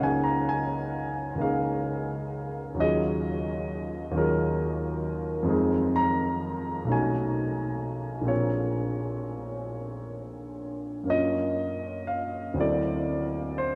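A vast, echoing space wraps a polished, up-front grand piano in a huge wet reverb whose tail hangs for seconds. This serene, hazy impressionist solo piano piece in Db major drifts at a slow 43 BPM in 6/8, its uneven beats stretched with rubato across a range from Bb1 to Bb5. Lush extended chords such as Db69, Ebm11, Cb9 and Gbmaj7 unfold before a closing D9 at 12.6 seconds in this short fragment of a longer work.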